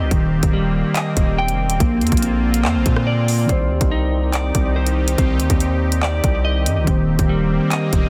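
Menacing and ominous, this half-time drill cut is anchored by a drum kit of hard-clipped kick, bright hats, handclaps and rim clicks, sitting up front beside a saturated, aggressive 808-style bass with heavy distortion. A dark, compressed clean electric guitar picks arpeggios through analog chorus and digital delay, while a detuned, airy pad with a resonant filter swell holds sustained chords underneath, moving through Eb6, Bbadd9 and Cmadd9. At 3.5 seconds, muted, felt-like synth keys with chorus slip in softly in the background, all within a dense, heavily limited modern mix with light reverb.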